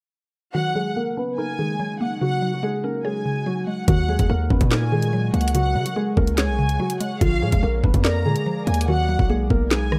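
The overdriven drill drum kit hits up front from 3.9 seconds with a knocking kick, woody snare, bright hats, handclaps and rim clicks, joined by a punchy, heavy 808-style bass in this tense, menacing half-time drill cut at 144 BPM in Eb minor. Before that, a dark, boxy grand piano carries the melody with slapback echo, shadowed by a lush, vibrato-rich violin section and a round, mallet-like synth pluck through chorus and phaser, while an ethereal pad drifts in the background from 1.1 seconds. A filter sweep runs through the opening, the chords move from Ebm7 and Dbsus4 toward Bb and Bmaj7, and the hi-hats drop out at 8.9 seconds, all set in light digital ambience.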